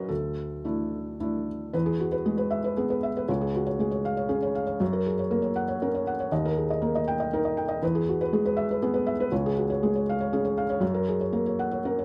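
A felt-muted upright piano plays solo across this brief, hopeful and tender neoclassical minimalist excerpt in 3/4 at 118 BPM with a rubato feel, its soft, mellow, intimate tone sitting up front under close, detailed microphones and light reverb as the harmony moves from Dsus2 into a cycle of E, C#, F# and D# chords after 1.7 seconds.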